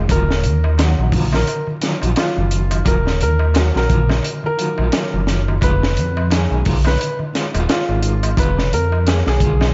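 Smoky and brooding, this excerpt of trip hop moves at 87 BPM in Eb minor with a swung sixteenth-note feel, shifting from Ebmadd9 to Fm7b5 at 5.6 seconds. A dark, detuned saw bass rumbles up front with tube saturation, while a gritty, saturated breakbeat kit with a punchy kick and high-tuned snare drives the groove and a small, crisp metal-shell darbuka sits in the background. A felt-muted upright piano carries the intimate melody, its action noise audible and its notes trailing tape echo, over an electric guitar at the edge of break-up that adds tremolo and tape echo, all set in studio reverb with vinyl crackle and a rolled-off top.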